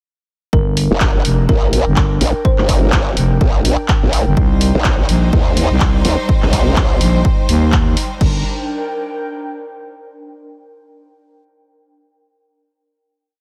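A swaggering, bouncy bass house drop in G minor at 125 BPM bursts in at 0.5 s with a punchy, tape-warm four-on-the-floor kick, a thick growling FM bass chopping out up-front phrases, an airy, breathy pad drifting in the background and a round, tine-like thumb-piano pluck offering short phrases through chorus and analog delay. A bright-hatted house kit with handclaps and crash joins the swung groove, while a second, saturated growl bass wobbles at changing speeds, its tone pumping against the kick. From 4.4 s a lush, bowed studio string section adds sustained chords as the harmony moves from Gm to Cm. The final G minor chord arrives at 8.2 s, and after 8.4 s the pad holds it alone in light reverb.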